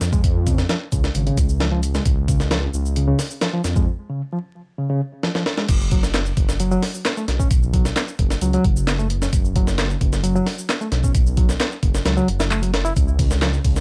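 A gritty, pitched-up breakbeat kit with a thumpy kick and high-tuned snare drives this funky, raw breaks excerpt at 132 BPM, joined from the start by a deep, rumbling detuned saw bass and a quieter overdriven analog drum machine adding handclaps, ride and shaker. A barky, reedy electric piano plays the riff through overdrive, fast tremolo and digital delay, sounding as if through built-in speakers. A break arrives at 3.9 seconds with a drum fill at 5.2 seconds, and the dry mix carries a layer of vinyl crackle and a dulled top end.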